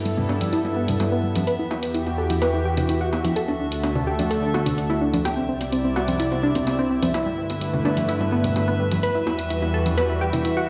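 Expansive and uplifting, this progressive house passage, cut from a longer piece, rests on an up-front analog pad of smooth, warbling, detuned sawtooth chords with chorus, while a drifting glass-harmonics texture with slow-blooming sine overtones hovers calmly in the background. A crystalline wavetable pluck spins arpeggios through chorus and digital delay, its ring-modulated tone shaped by a filter sweep across the full 10.7 seconds. Electronic hi-hats and overdriven, layered congas and bongos drive the straight groove over a G6, Emadd9, D, Cadd9 cycle, all set in a lush hall reverb and heard through a big sound system in a bare stone room.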